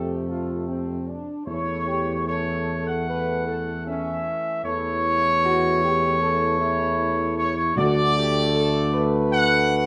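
A mellow, up-front trumpet section carries the melody of this solemn, triumphant ceremonial fanfare from the start, over sustained chords from a soft-attack French horn section and a distant, roomy trombone section, while a solo tuba with light vibrato holds the bass. At a stately 77 BPM in 4/4, the classical brass moves from F through A/E and arrives on D at 7.8 seconds, when calf-headed timpani struck with medium mallets enter in the background. Light reverb surrounds the ensemble in this brief passage cut from a longer piece.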